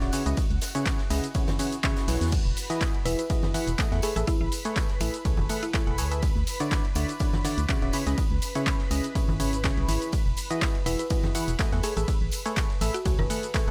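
Piano house at 123 BPM with a light swing, joyful and uplifting, built on a biting, up-front FM electric piano riff with chorus and dub echo over an organ-like, hollow FM bass and a punchy electronic kick. The riff, the bass and a silky, string-like analog pad in the background all pump to the sidechain as the chords move from C#m7 through Emaj9, Amaj9 and Dmaj9. A punchy analog drum machine with claps, hats, shaker, ride and crash, re-recorded in a large room, sits over a very quiet unplugged kit played with bundle sticks and ringing tambourine and congas set back in the mix. A woody, mellow mallet-like synth pluck adds a short echoing melody at 3.1 and again at 10.9 seconds in this excerpt from a longer piece, all wrapped in digital ambience.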